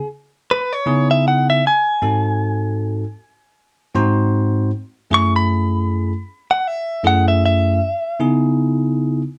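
A clean, compressed electric guitar, picked and recorded direct, opens this soulful, mournful minor blues in C# minor at 78 BPM, its up-front melody sitting high over a gentle swing on the sixteenths. At 0.9 s a bright, bell-like tine electric piano with phaser joins in accompaniment, moving through C#m7, G#7b9 and F#m7 before the guitar falls silent at 8.2 s as the harmony returns to C#m7. The band plays live together in one room with moderate studio ambience, tuned slightly sharp to A4 = 445 Hz, in this brief cut from a longer piece.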